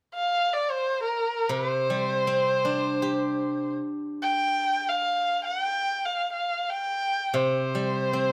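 This Chinese traditional chamber piece in C shang mode moves in free time with a graceful, festive air, in a brief fragment cut from a longer work. A dark-toned solo erhu carries the melody from the opening, bowed with vibrato and portamento and sounding expressive, up front yet slightly distant. A steel-string zither played with fingerpicks adds silvery, ringing accompaniment, entering at 1.5 seconds and returning at 7.3 seconds, all captured by close, detailed microphones in light reverb.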